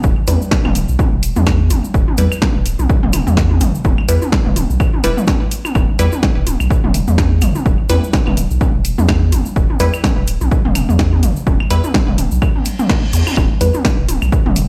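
The groove sits on a steady 4/4 pulse with a swung sixteenth-note feel, setting up a quirky, cool minimal techno cut taken from a longer piece. An up-front electronic kick, punchy and tape-warm, drives it from the first moment, joined almost at once by a punchy analog drum machine supplying hi-hat and snare, plus electronic toms and claves treated with delay. A grainy, bright cabasa sits close and dry in the background, while a deep, thick, saturated sub bass holds the low end with sidechain pumping. Crisp, detuned wavetable chord stabs with a wave-folded, filter-plucked bite and a moving notch flicker through the mix, trailed by delay. Electronic sound effects mark the opening with an impact and return with a reverse cymbal and zap from 12.6 to 13.4 seconds. The whole piece carries a light digital ambience and a stony room reverb, as if played through a big sound system in a bare space.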